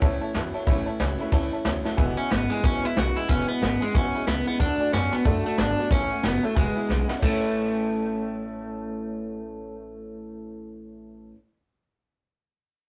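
A swung 4/4 groove at 183 BPM drives this upbeat, rowdy rockabilly excerpt in A major, where up-front brushed drums with dark cymbals and a punchy kick play until 7.3 s over a thumpy, woody pizzicato upright bass, a boxy parlour acoustic guitar, a slightly detuned upright piano and a bright lo-fi electric guitar riff set in the background, while a twangy, slightly broken-up lead electric guitar carries the melody from 2.2 s, the whole heard as a rough rehearsal-room recording with tube saturation and light reverb.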